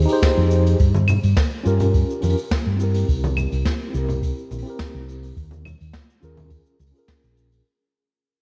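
A mellow tine electric piano with tape echo, a dark, round, up-front fingered bass and a brushed jazz kit of snare, hi-hat, claves and shaker open this smooth sunset chillout excerpt at 105 BPM in 4/4, joined at 0.2 s by a deep analog electronic kick and at 0.9 s by ringing congas in the background, moving through Fm7, Gm7b5, C7 and Eb7sus4 while fading out the whole way under a moderate concert-hall reverb and the warbling pitch drift of worn cassette tape.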